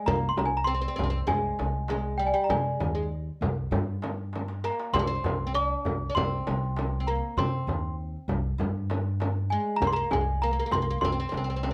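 Arabic maqam ensemble music in C maqam saba, this stately, festive excerpt moves at 99 BPM in a straight 4/4. A worn, slightly out-of-tune celesta carries the bell-like, sweet melody, while a fretless oud with double strings plays a woody, plectrum-plucked second line with slapback echo, and an up-front pizzicato upright bass with steel strings anchors the low end. A crisp metal-shell darbuka sits in the background of a live room alongside a deep, band-limited vintage frame drum, with a drum fill from 4.3 to 4.9 seconds, and light reverb sets the ensemble in a gentle space.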